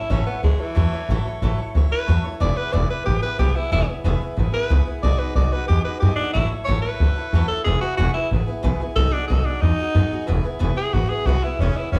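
Rowdy and retro, this brief rockabilly cut features a raspy, gritty tenor saxophone carrying the melody up front with scooped notes and light vibrato, bathed in slapback echo and plate reverb over a bright, boxy picked swing-style acoustic guitar with audible finger squeak and a woody, thumpy pizzicato upright bass, all heard as a live gig through the club's PA.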